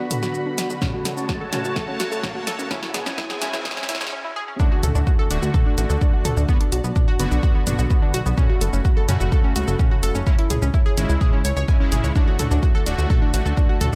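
A straight 4/4 pulse at 127 BPM drives this hypnotic, dramatic melodic techno excerpt, where a build-up of drum-machine fills, a faint riser, a bowed-like drone and an airy, resonant pad under filter sweeps gives way at 4.6 seconds to a drop, while a heavy, room-recorded kick, a punchy, wave-folded bass, pumping detuned pluck arpeggios, fat, warbling brass stabs with delay and a blurred granular cloud pad run through nearly the whole excerpt over Bm, F#m, C#m and D.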